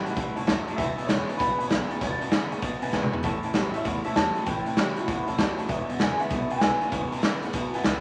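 Swinging at 195 BPM in 4/4, this rowdy, rollicking rockabilly excerpt in E mixolydian rides A7 and E7 chords, with a punchy, up-front garage drum kit that kicks in at 0.1 s and adds a fill at 2.9 s beneath a bright, twangy electric guitar melody through a phaser that drops out at 7.4 s, a lo-fi, slightly broken-up electric guitar riff also through a phaser, and a jangly, detuned honky-tonk upright piano, full-bodied jumbo acoustic guitar and thumpy pizzicato upright bass on gut strings sitting in the background, all in a wet, roomy studio ambience.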